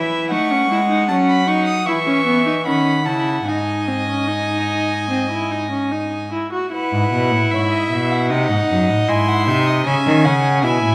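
A classical, baroque-style fugue for string quartet in C# minor, this solemn, contemplative passage is cut from a longer piece and moves at 76 BPM in a straight 4/4. Viola and cello sit up front, the viola warm and the cello rich, both bowed with gut-string, period-style tone, while a dark, nasal second violin sounds distant beneath the first violin, which enters at 0.3 seconds with a smooth, reedy melody high above. A wet recital hall reverb surrounds the four players, and from 6.7 seconds the harmony moves through C# minor and G#7 before settling back on C# minor.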